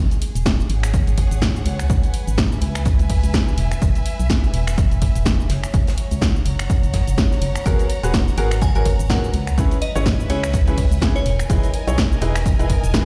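Soulful and energetic, this piano house excerpt rides a swung groove with a big, roomy studio reverb, as if played on a large sound system in a bare room. A hollow, organ-like FM bass with a dark, percussive attack pumps against the sidechain from the start, joined by a bowed chamber string section with rich vibrato that pumps in the same way. The beat centers on a punchy, tape-warm electronic kick up front, with an overdriven analog drum machine supplying dry snare, finger snaps, hi-hat and shaker, while a very quiet acoustic studio kit adds its own small-room hi-hat and snare. At 7.7 seconds a bright, vintage grand piano enters with a riff of long sustain, treated with digital delay and sidechain pumping. A glassy, crystalline synth bell with chorus and delay follows at 8.6 seconds, carrying a short melody over soulful minor-seventh and ninth harmony.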